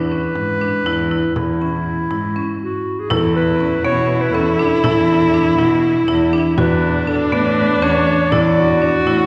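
Playful and hopeful, this short contemporary chamber piece in 7/8 moves at 241 eighth-note beats per minute with a straight feel in E mixolydian, and it is cut from a longer piece. A warm, classical-style clarinet carries the melody up front from the opening, over a smooth, bowed cello bass with vibrato, while a marimba struck with hard mallets adds bright, woody arpeggios that sound close and dry. A small, bright frame drum played with soft hands sits very quietly underneath from 0.4 seconds. After a brief stop between 2.6 and 3.1 seconds, a rich, focused viola enters up front with a second line, its bowed tone carrying vibrato. The harmony shifts from C#m/E to E7sus4 and then to D/E at 6.6 seconds, and a wet concert hall reverb gives the ensemble the resonant air of a church or large hall.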